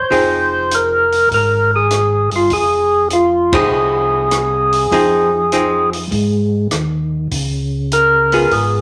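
A roomy, reverberant large-studio sound frames this brief excerpt of soulful, bluesy soul jazz from an organ trio, swung in 4/4. Up front, a fat, lightly overdriven tonewheel organ with third-harmonic percussion and slow rotary speaker carries the melody beside a dark, clean hollow-body electric guitar picking the accompaniment, while a smooth second organ with chorus vibrato and key click plays the bass line and an acoustic drum kit with dark cymbals, boomy kick, hi-hat, ride and rim clicks sits lower in the mix. The band hits a shared accent at 3.4 seconds, and the harmony moves from Fm7 to Db7 at 7.3 seconds.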